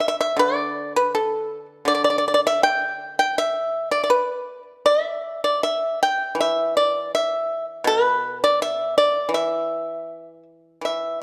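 A solo pipa opens this short passage from a longer Chinese traditional piece, its fingerpicked notes warm and percussive, ranging from B2 up to G5 in an E yu mode. The mood is longing and elegant, moving in a rubato 2/4 around 81 BPM. The instrument sits up front with a dry tone, while a moderate recital hall reverb lends the space a gentle air through to about 11.2 seconds.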